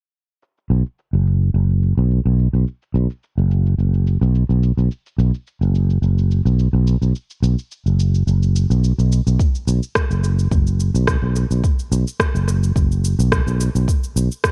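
Mystical and hypnotic, this organic downtempo excerpt moves at 107 BPM in 4/4 with a light 16th-note swing. An electronic shaker and rim click, tape-warm and softly placed in the mix, run from 0.4 seconds to the end, shaded by low-pass filtering, studio reverb and analog delay, with a filter sweep across the drums throughout. A sustaining fretless electric bass enters at 0.7 seconds, growly and amped through tube saturation, sitting up front in a low register between F#1 and B1. At 9.4 seconds a layered, deep electronic kick drum arrives, pushed forward and touched with studio reverb. The overall sound is dry in its room yet echo-heavy, giving the sparse groove a drifting, trance-like pull.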